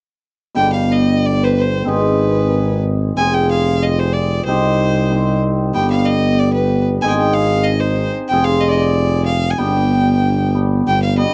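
An intense, bright violin carries the melody up front, bowed by a single player with vibrato, in this festive yet soulful klezmer excerpt at 93 BPM in 2/4, set in G phrygian dominant and tuned to A4 = 438 Hz. A mellow, shimmering hammered cimbalom rings out the accompaniment from 0.5 s, while a warm, smooth-topped tuba with light vibrato holds down the bass in a classical style, also up front. The harmony circles through G, Ab, Fm and Cm, and the whole is captured as a dry, close 1970s-style studio recording with small room ambience.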